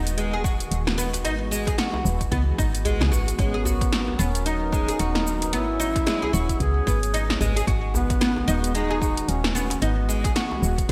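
A chorused, detuned analog pad and a round, dark FM bass open this earthy, meditative organic downtempo excerpt in G# minor at 112 BPM, both pumping under sidechain as a swung deep house kit with punchy overdriven snare and metallic hats, an overdriven deep electronic kick and a very quiet, cracking djembe settle in over G#m7, F#9sus4 and Bmaj7 chords. A bright, plectrum-plucked fretless oud spins delayed arpeggios from 0.2 s, and at 3.4 s a mellow, folk-style duduk with vibrato takes the delayed solo melody while a faint bronze singing bowl rings with slow beating. The bright 1980s-style digital production places the woody bass up front; the kit carries gated reverb, and both the kit and the kick carry the character of a large room.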